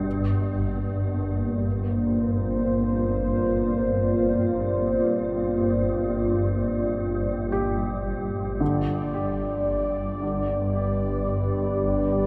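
Dark ambient drone with an ominous mood, where a deep, warbling, vintage-toned pad sustains chords through chorus over a swarming, detuned, granular low drone, while a warm concert grand piano plays short-sustained arpeggios into a diffuse delay, and at 8.7 s a bubbling, resonant stepped-filter texture joins as the harmony moves from Bbadd9 to G, all set inside a huge, wet reverberant space.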